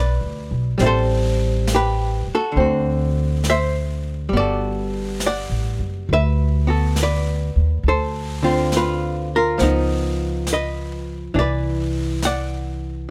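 Closely miked and nearly dry, this recording sounds intimate and detailed, placing the guitar and bass up front. It is a wistful, melancholic jazz ballad at 68 BPM in 4/4 with a swung eighth-note feel, heard as a fragment of a longer piece. A dark, clean, compressed hollow-body archtop guitar, picked and amplified, carries the accompaniment from the start, moving through rich chords such as Am7, D9, Gmaj9 and C#9 before settling on Cmaj9. A woody upright bass with steel strings is plucked beneath it throughout. At 0.8 seconds a jazz kit joins, played softly with brushes on a medium-tuned snare and hi-hat, its airy, polished studio-room sound sitting well behind the other two.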